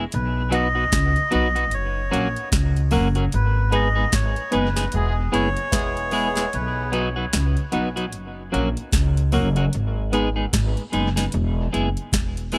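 A woody, growly upright bass sits up front beside a booming analog drum machine with a deep kick, crisp snare and metallic hats in this hazy, spacious dub reggae groove, cut from a longer piece and set in a small room. A reedy, breathy melodica carries the melody through dub echo until 6.9 seconds, while a dark, scooped clean electric guitar and a hollow, chorused organ stab, also echoing and tucked in the background, fill out the accompaniment. A clear, vintage horn section with vibrato adds a brief echoed second line from 4.9 seconds, and the kick drops out from 6.5 to 8.1 seconds.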